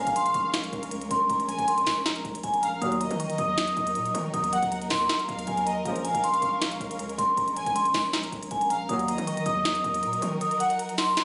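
Trap hip hop in Bb minor at 158 BPM with a half-time feel, menacing and melancholic, this short excerpt sets an up-front, airy vibraphone melody with medium hard mallets, low-pass filtering and delay over a rich, distant violin section line with delay, smooth bowed string chords with vibrato and portamento, dark vintage brass stabs landing at the very start and at 2.8, 5.9 and 8.9 seconds, a heavy, aggressive distorted 808-style bass, and a trap kit of sharp snare and crisp hats, all heard through light studio reverb in a dull, phone-in-the-room recording whose kick drops out at 10.4 seconds.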